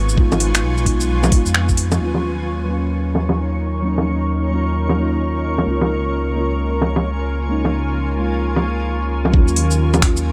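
Melancholic and nocturnal, this future garage excerpt at 131 BPM in Eb minor swings its 16ths over muted, felt-like synth keys with chorus and delay, a blurred, evolving granular cloud pad, and a deep, rumbling detuned saw bass, all three pumping against the beat, while an up-front garage kit of bongos, finger snaps, metallic low-passed hats and shaker ticks along, a tape-warm knocking kick drops out at 1.8 s and returns at 9.3 s, and a breathy, wind-like tuned noise texture drifts in the background from 2.5 s as the chords move from Db7 through Ebm7 and Bbm7/Db.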